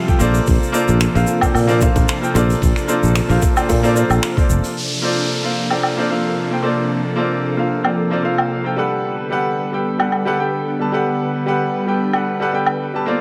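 Sunny and warm, this short sunset chillout piece at 112 BPM, cut from a longer piece, has a brilliant, up-front baby grand piano with tape echo and a silky string machine with phaser and ensemble chorus holding Bbmaj9 before moving to Gmaj9 at 8.8 seconds, while a growly fretless bass and a gritty, thumpy electronic kick drive the opening until 4.6 seconds, tight bongos tap in the background, a dark brushed kit with finger snaps, hi-hat, shaker and woodblock carries on, and an electronic downlifter sweeps through from 4.8 seconds, all in a light, small-room reverb.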